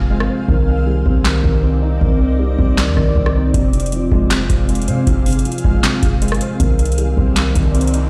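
Heard through a big sound system in a bare stone room, this brooding, dark trap excerpt in C minor runs at 157 BPM with a half-time feel, moving from Cmadd9 to Fm and back. A boxy, mellow grand piano sits up front over a clean, boomy 808-style bass with a sine tone and fast attack, while a cloudy, detuned granular pad with slow attack and built-in reverb blurs the chords behind them. A booming analog drum machine enters at 0.2 seconds with a deep kick, crisp snare, handclaps, rim clicks and metallic hi-hats, a short room sitting on the snare, claps and hats. The opening break lasts until 3.5 seconds, and a faint electronic riser rises in the background from 7.3 seconds.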